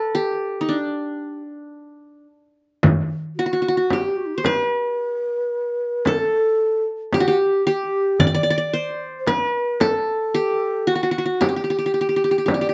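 A bright-edged, plectrum-plucked qanun leads this stately Turkish makam ensemble piece in 10/8 at 112 BPM, sitting up front with a slapback echo as it opens alone before a stop that lasts until 2.8 seconds. At 2.8 seconds a crisp, high metal-shell darbuka and a deep, band-limited vintage frame drum enter, and a breathy, hollow low ney joins at 3.4 seconds with a tongued second line under its own slapback echo. The performance carries light reverb and an open-air recording quality, cut from a longer piece.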